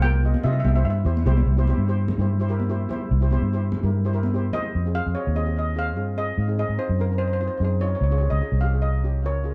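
A straight 4/4 calypso groove at 147 BPM sets a dramatic, tense mood in this excerpt, anchored by an up-front, round, foam-muted vintage fingered electric bass and high-tuned, distant congas that play until 4.6 seconds. A double-seconds steel pan struck with medium rubber sticks holds the shimmering accompaniment throughout, while a bright lead pan on hard rubber sticks, touched with tape echo, sounds briefly until 1.0 seconds and returns at 4.5 seconds. The harmony moves from Csus4 and C into darker Fm7, Ab7 and Dbadd9 colors, all within a dark production with light reverb.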